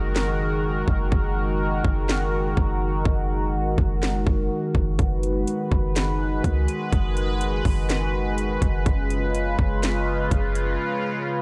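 Atmospheric cloud-rap hip hop in F# major at 124 BPM with a half-time feel, blissful and dreamy, where a resonant, detuned sawtooth pad with chorus and sidechain pumping holds bright, up-front chords moving from F#69 to B6/F# at 5.0 seconds and C#7/F# at 8.9 seconds, over a deep, boomy sine 808-style bass and an electronic trap kit of hard-clipped kick, sharp snare and metallic hats re-recorded in a small room, all set in a digital ambience in this fragment of a longer piece.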